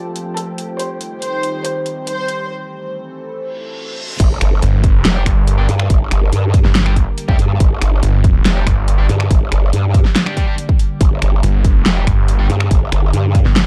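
This excerpt from a heavy wobble dubstep track moves in a half-time feel, with a dubstep drum kit of huge snare, metallic hats, finger snaps and crash arriving almost at once, the hats, cymbals and snare thinned by high-pass filtering. It opens as an aggressive, chaotic build-up in which an evolving wavetable pad holds morphing sustained chords with chorus, phaser and its own reverb, an airy, breathy pad adds brief texture, and a soft, floating symphonic violin section plays a close, bowed sul tasto melody under a filter sweep and delay until 2.5 s. After a short break, a reverse cymbal leads into an electronic impact, and the drop lands at 4.2 s with a punchy, up-front electronic kick and a wobbling, formant-filtered growl bass with overdrive and chorus. A snarling, detuned unison saw bass with distortion and a moving notch joins at 4.6 s, holding a low G, while double-tracked, picked electric guitar stabs with overdrive and delay enter at 5.2 s. 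The chords pass from Fadd9 through Cm and Am to Gm, and the dark, warm production stays dry.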